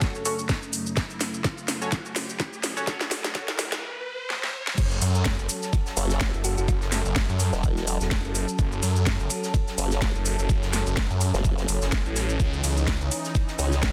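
A dense, heavily limited bass house excerpt with light reverb, swaggering and gritty at 126 BPM with a swung 16th-note feel in F# dorian. It opens on a build-up over an F#m chord: a bright, evolving resonant pad with a slow attack sustains underneath, a nasal, band-passed chord stab with lush chorus and digital delay filter-sweeps until 3.4 s, and a riser climbs in the background while drum fills roll through. A knocking, tape-tinged electronic kick and an up-front garage kit with cracking snare, metallic hats, crash, ride and shaker drive the groove, while the synths pump with sidechain compression. The drop lands at 4.8 s with a thick, swirling, detuned saw bass, phased and tube-saturated, joined at 6.0 s by a formant-sweep wobble bass, while a very quiet, acoustic funk kit with dark cymbals and a high-tuned snare sits deep in the mix. A round, tine-like pluck adds a brief mellow note on F#4 in the background, and the harmony shifts to C#madd9 at 12.4 s.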